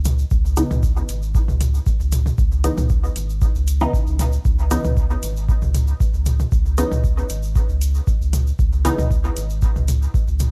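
A round, deep sub bass anchors this hypnotic, cavernous dub techno excerpt in C# minor, sitting up front with tube saturation and sidechain pumping across its G#1 to C#2 range. At a straight 116 BPM in 4/4, an overdriven analog kick drum and metallic, overdriven hi-hats hold the pulse, both carrying the character of a small room. Electronic toms, layered and produced, pump with the sidechain and trail off into dub echo, while a grainy, bright egg shaker sits low in the mix with an acoustic, live-room feel. A muted, detuned sawtooth chord stab enters at 0.6 s over a C#m9 chord, with a filter pluck, short decay, chorus, phaser, cassette tape coloring, sidechain pumping and dub echo, before dropping out at 9.1 s. The mix keeps little reverb, so the cavernous depth comes mostly from the echoes and the low end.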